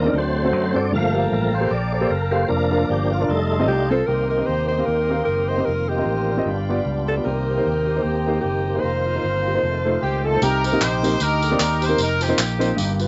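A tonewheel organ opens this jubilant, uplifting uptempo gospel excerpt with full, sustained chords through a slow rotary speaker and chorus vibrato, taking the spotlight over a soft, reedy accordion with slow beating, a punchy amped fingered electric bass and an intimate grand piano whose action noise is audible. The groove moves at 152 BPM in 4/4 with a swung eighth-note feel, as the chords shift through D7, Gm9, Bb/F and F7. At 3.7 seconds a breathy, close-miked alto saxophone enters with a jazz-style melody, its subtone, soft attack, light vibrato and scooped notes colored by cassette tape. The harmony then circles Cm7, F7sus4 and G7 before a tight, distant horn section takes over the melody at 10.0 seconds, clear and roomy with light vibrato, colored by cassette tape and analog delay. From 10.4 seconds tambourine, egg shaker and group handclaps ring out in a small room, driving the closing stretch with bass and piano. 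The whole thing has the light reverb and dulled top end of a home cassette recording, and it is cut from a longer piece.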